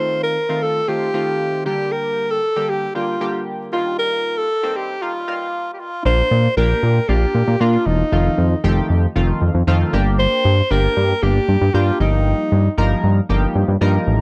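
Dance-pop at 116 BPM in Bb major, carefree and upbeat, where a breathy, whispered alto saxophone carries an intimate melody with tape echo over glossy, chorused retro synth keys, building until a fat, detuned analog bass enters for the drop at 6.1 seconds, all in a dry, close 1970s-style studio sound with light reverb.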